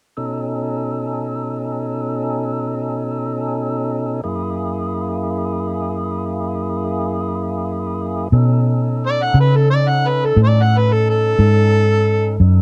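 Slow blues in 12/8 at 59 BPM in B mixolydian, swaggering and rollicking, this excerpt opens with a fat, clean tonewheel organ sustaining B7 and F#7 chords through a slow rotary speaker with key click, joined at 8.3 seconds by a round, foam-muted vintage electric bass on B9 and at 9.1 seconds by a gritty, overdriven harmonica solo with scooped notes, tongue slaps and light vibrato, all in a dark, dry production.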